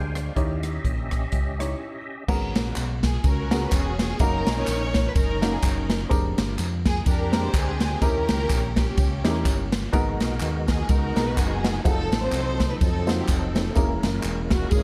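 Uptempo gospel at 125 BPM with a fervent, soulful swing, cut from a longer piece: a dark, mellow baby grand with audible action noise and a round, punchy fingered electric bass carry the harmony under an up-front big-band drum kit with a punchy kick, while a reedy tonewheel organ with key click and slow rotary speaker sounds at the start and returns from 9.9 seconds, distant tambourine and handclaps arrive after a brief break at 2.3 seconds, and a lush, bowed symphonic string section takes the melody from 3.0 seconds in a dark production with light reverb.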